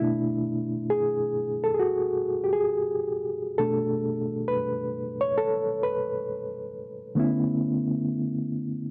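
A dry, close recording with a 1970s studio feel and a light digital ambience frames this introspective, sultry R&B excerpt in swung 4/4, where a reedy, worn, slightly out-of-tune electric piano plays alone, up front through its built-in speakers with a fast tremolo, resting on Bm7 before shifting to Bm11 at 7.2 seconds.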